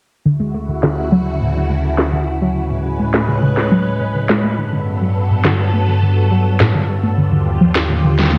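A silky string machine with phaser and ensemble chorus holds sustained major-ninth chords up front, moving from Dmaj9 to Amaj9, Gmaj9 and Ebmaj9, while a warbling, lo-fi pluck with 12-bit sampler grit and dub echo plays arpeggios and a woody electronic snare, filtered and carried on digital delay, enters at 0.8 seconds, giving this glitchy, wistful 104 BPM IDM excerpt, cut from a longer piece, its light reverb.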